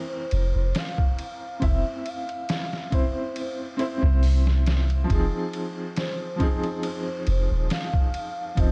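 Dark, crackling vinyl ambience frames this smoky, melancholic trip hop excerpt in F minor at 69 BPM with a light 16th-note swing, where a woody upright piano with tremolo and tape echo and a pure, breathy sine lead colored by phaser, chorus, cassette tape and tape echo play from the start, joined at 0.3 s by an up-front, muffled, pitched-down sampler-style drum kit with a thumpy kick and studio reverb and a deep, round 808-style bass, as the harmony moves from C7/F to Fm7 at 5.1 s.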